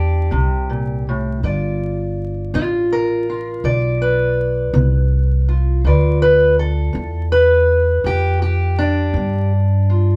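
In a straight 12/8 pulse at 54 dotted-quarter beats per minute, this soulful, rollicking acoustic country blues fragment in G mixolydian moves from C7 to G7 at 1.4 s. A dark, boxy parlour-style steel-string guitar carries the fingerpicked melody, and a woody, thumpy pizzicato upright bass on gut strings holds the low end; both sit up front throughout the 10.2 s. A moderate studio reverb, a vantage further back in the room and a layer of vinyl crackle give the recording an aged, lived-in character.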